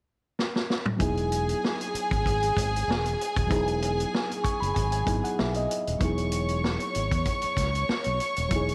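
Lush 1970s-style soul in E major at 96 BPM with a gentle 16th-note swing, this smooth excerpt opens with a drum fill on a vintage kit with a punchy kick and rolled-off top, then settles at 1.0 seconds onto an Emaj7 bed of fingered electric bass, a reedy, worn and slightly out-of-tune electric piano that takes a fill from 4.1 seconds, and a dark, intimate violin section bowed sul tasto with light vibrato, all in a small, lightly reverberant room.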